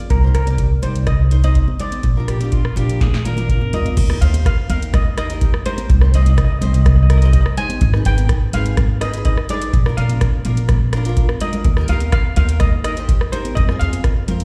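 Calypso at 125 BPM in Eb major, carefree and bouncy, where a shimmering steel pan carries the melody over a fingerpicked nylon-string guitar, a woody pizzicato upright bass up front, a punchy analog drum machine with drum fills at 3.0 and 11.3 seconds, high-tuned congas in the background, and a clear alto saxophone adding a brief vibrato-tinged second line from 2.3 to 3.9 seconds, all heard as a live gig through the venue's PA with recital-hall reverb.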